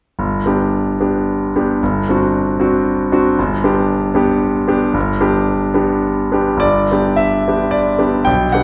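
Classical romantic character piece for solo piano in G major, set in 3/4 with a free rubato feel at around 99-118 BPM and a hopeful, warm mood. A bright, brilliant concert grand plays alone from 0.2 to 8.6 seconds, ranging from G1 to G5 with a smooth tone, a deep bass and a vintage, up-front character, moving from G through D7/G and back to G before a new section begins at 6.6 seconds. The piano is heard from further back in a wet recital hall with a 1.5-second reverb, and this short excerpt is cut from a longer piece.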